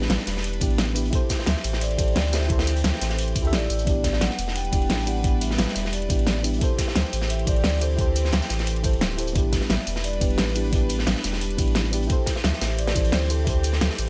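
A swung liquid drum and bass groove at 175 BPM in A minor layers a crunchy, rolled-off breakbeat kit with an overdriven pop kit of fat snare, metallic hats, ride and tambourine, while a gritty, thumpy electronic kick enters at 0.6 seconds over a round, deep sine sub bass sitting up front. A mellow, warbling FM electric piano with chorus and dub echo accompanies a floating, sul tasto string section that pumps under sidechain and holds sustained chords over A9sus4 and D9sus4, giving this melancholic, dreamy excerpt its haze. From 1.5 seconds a soft-mallet vibraphone, dry and ringing in the background with dub echo, carries the melody in a small room ambience.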